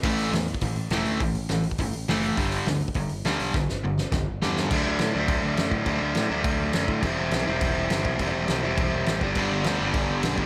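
This upbeat, rebellious punk rock excerpt drives along at 206 BPM in a straight 4/4, cut from a longer piece. A loose indie drum kit sits up front in a studio room with a fat snare, punchy kick, hi-hat and crash cymbal, its gritty, saturated sound carrying a rolled-off top, and a drum fill runs from 3.6 to 4.7 seconds to mark the change of section. Underneath, an overdriven picked electric bass gives a dark, round, direct tone between E1 and A2. Two crunchy overdriven guitars play riffs: the louder one, picked and up front with a warm edge, spans G2 to E4 throughout, while a brighter second guitar drops out at 4.7 seconds and returns at 9.4 seconds. The chords move from A5 and G5 into D, C/E and G, all wrapped in light reverb.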